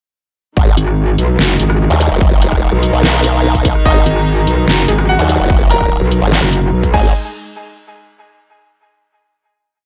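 Aggressive and chaotic, this short heavy wobble dubstep piece in G# minor runs at 146 BPM in a half-time feel, opening at 0.6 seconds with a drop built on two up-front wobble basses: a formant-sweep bass and a metallic, saturated FM bass, both chorused and overdriven, their modulated phrases shifting wobble speed as the metallic one answers the other. A punchy, overdriven electronic kick and a layered dubstep kit with a deep snare, closed hi-hat, rim click and crash drive the beat, while a reedy, gut-string chamber string section holds sustained chords in the background, pumping under sidechain. A brilliant grand piano enters at 3.9 seconds with a repeating riff in octaves through delay, and bold, detuned orchestra-hit-like sawtooth stabs echo sparsely from 4.9 seconds before a final hit at 7.1 seconds.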